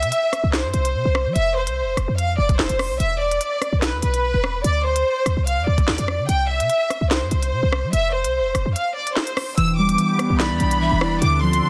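A half-time drill groove of knocking kick, sharp snare, crisp hats, rim clicks and handclaps drives this cold, menacing hip hop excerpt, with punchy, tight 808-style bass and a lush, expressive bowed violin section up front carrying the melody; a brief kick dropout leads into the entry of muted, felt-like synth keys and a bright, airy, evolving pad with chorus at 9.6 seconds, and a breathy bamboo pan flute with delay joins in the background at 10.4 seconds, the mix sitting in light digital reverb under a dense, heavily limited master.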